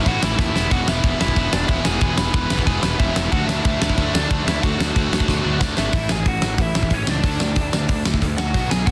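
A big, up-front rock drum kit with a fat snare and tight kick leads this rowdy, upbeat punk rock excerpt at 184 BPM, alongside a growly fuzz bass, a biting overdriven lead guitar melody, and two picked, distorted riff guitars set in the background, the cranked stack guitar dropping out at 5.9 s as a new section begins, with drum fills at 0.4 s and 5.3 s in a dry, dense, heavily limited mix.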